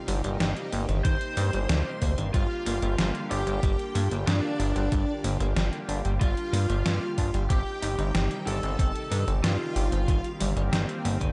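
Synthwave at 93 BPM in G minor, nocturnal and cinematic, built on a glossy, nasal chorused synth bass and a thumpy electronic kick that enters at 1.0 seconds to join a gated 80s digital drum machine, already running, whose overdriven hi-hat and snare ring out through gated reverb. In the background a lush, detuned unison pad pumps with sidechain and phaser, while a clean, compressed electric guitar riff sits under tape echo and chorus. An overdriven lead guitar through a small cranked amp carries the melody over Eb6/G, Gm7 and Cm/G chords, shadowed by a shimmering vintage string-machine violin line, all within a dark, lightly reverberant production.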